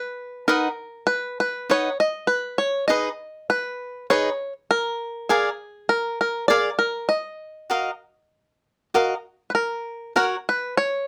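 Mexican folk in Eb minor, this short excerpt moves at 99 BPM in a straight 4/4 with a mood that is at once festive and romantic. A bluegrass banjo, played with fingerpicks, carries the melody from the opening moment, its twangy, percussive voice sitting up front. At 0.5 seconds a picked cavaquinho joins as accompaniment, its bright, crisp tone also placed close and forward, and it stops at 10.4 seconds, leaving the banjo to finish alone. The harmony travels from B through Abm and Bb7 to Ebmadd9 before a new section arrives at 9.6 seconds on F#. Close, detailed microphones and light reverb keep the two acoustic strings intimate and clear.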